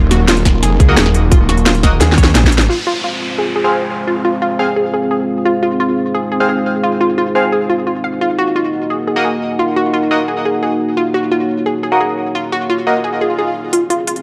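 This excerpt of dark, tense technical drum and bass opens on a straight 4/4 groove, with a tight, tape-toned electronic kick and an up-front kit of cracking snare, crisp hats and crash, its snare, hats and cymbals all low-pass filtered. A snarling, growling distorted saw bass drives the first 2.7 seconds alongside the drums, closing with a drum fill and a band accent before the kick, bass and most of the kit fall away. Underneath, a deep, moody analog pad holds sustained chords with chorus and sidechain pumping, while an up-front analog pluck spins arpeggios with chorus, digital delay and pumping, a filter sweep running over it through the long middle stretch. A nasal, band-passed chord stab with phaser, chorus and delay punctuates the music, and from 3.2 seconds a warbly, nostalgic, lo-fi pad drifts in the background. A downlifter, swell and riser mark the transitions, and the kit returns at 13.7 seconds to close the passage in a moderate, lush hall reverb with a dark overall production.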